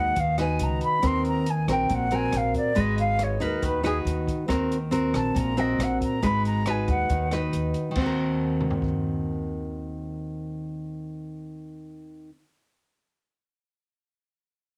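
Wistful and smooth, this bossa nova fragment opens with an airy concert flute solo, expressive and tongued with vibrato, over bright, fingerpicked nylon-string guitar with audible finger squeaks and a woody pizzicato upright bass. An acoustic jazz kit with dark cymbals, a boomy kick, rim clicks and toms sits low beneath them until 8.9 seconds, after the flute has dropped out at 7.3 seconds, and guitar and bass carry on alone to the end. The whole piece has a small-room ambience and a heavily compressed, radio-like sound.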